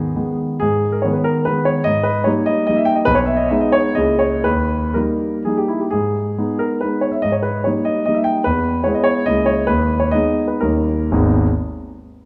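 Dotted rhythms sway through a lilting triple-time dance, pulled and stretched with expressive rubato, in this nostalgic, wistful romantic classical passage taken from a longer piece. A solo concert grand sits up front with a warm, deep bass, playing from 0.0 to 11.5 seconds as its harmony circles a minor home chord and leans toward its dominant before settling back. A moderate recital hall reverb and a dark, warm production wrap the piano in a gentle glow.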